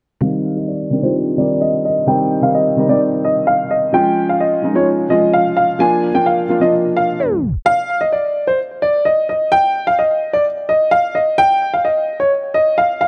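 A dark, boxy baby grand piano carries the melody high in the register, sitting up front with a worn, intimate tone and audible action noise, shaded by a low-pass filter and a delay. This brooding, hard-hitting hip hop piece in C minor runs at 129 BPM in 4/4 with a half-time feel and is tuned slightly sharp, to A4 = 441 Hz. Beneath it, a felt-muted upright piano plays soft, vintage-sounding accompaniment in the middle register, also low-pass filtered and up front, moving through C minor, D-flat and B-flat chords. A filter sweep runs through this opening stretch, and a tape stop starting at 7.2 seconds brings it to a halt. At 7.7 seconds the upright piano drops out and the harmony falls away, leaving the grand piano alone until 13.1 seconds. A moderate plate reverb with a long tail surrounds the music, and the passage is cut from a longer piece.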